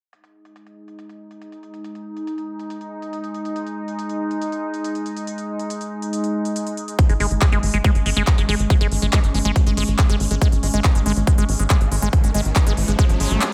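Hypnotic and intense, this 140 BPM psychedelic trance excerpt opens with a morphing, detuned wavetable pad holding sustained chords under crisp, filtered big-room handclaps and hats, until at 7.0 seconds a punchy, up-front electronic kick arrives with a tight sawtooth sequencer bass and a squelchy, resonant acid riff drenched in phaser and delay, and a background riser creeps in from 11.4 seconds.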